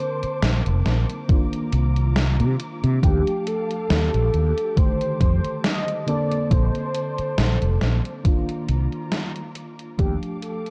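A lightly swung 4/4 groove from a gated 80s drum machine's hi-hat and gated-reverb snare, joined at 1.3 seconds by a thumpy, overdriven electronic kick, carries this woozy, dreamy vaporwave fragment from a longer piece, where a round, up-front fretless bass sits beneath a soft, warbling FM electric piano with tremolo and lush chorus, faint bowed chamber strings roughened by 12-bit sampler grit, and a velvety, detuned sawtooth synth lead melody with portamento and tape echo, the dark cassette-tape mix fading out from 7.7 seconds.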